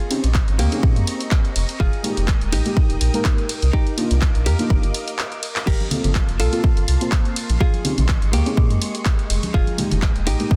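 Late-night and warm, this deep house excerpt moves at 124 BPM in 4/4 with a gentle swing on the sixteenths, cycling through minor eleventh chords from Bbm11 through Fm11, Cm11 and Gm11. A clean, picked hollow-body archtop guitar carries the melody between Bb3 and Bb4, its compressed tone roughened by vintage 12-bit sampler grit and trailed by digital delay. Beneath it, a silky, warbling string machine holds slow-attack chords with ensemble chorus and sidechain pumping, while a dark, detuned chord stab with chorus and phaser strikes with a fast attack, decays, and pumps in time with the beat. A deep, full sub bass with an octave layer sits prominently under an up-front, punchy, tape-warm electronic kick, and an analog drum machine adds handclaps, hi-hat, ride and crash. After a short break and drum fill at 5.2 seconds, ringing, medium-tuned congas played with soft hands join in the background from 5.8 seconds, all wrapped in digital ambience and a dense, heavily limited modern master.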